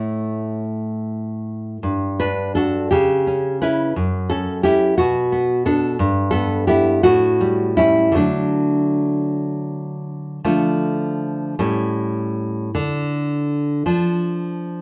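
A romantic solo classical guitar piece in 6/8, nostalgic and tender, taken from a longer work and moving at a slow, rubato 52-60 BPM. The fingerpicked nylon-string guitar sits up front with a full-bodied, deep tone and audible finger squeak, ringing in a moderate large-studio reverb as it wanders through D major harmonies that settle on D at 8.2 s. At 10.4 s the music darkens into D minor, turning between Dm and A7 until it breaks off at 14.8 s.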